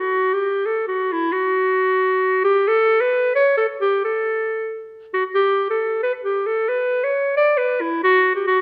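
A moderate recital-hall reverb surrounds this brief, bouncy and festive alpine folk fragment in triple metre, where a single up-front clarinet with a vintage, warm, classical-style tone plays alone from start to finish at 8.6 seconds.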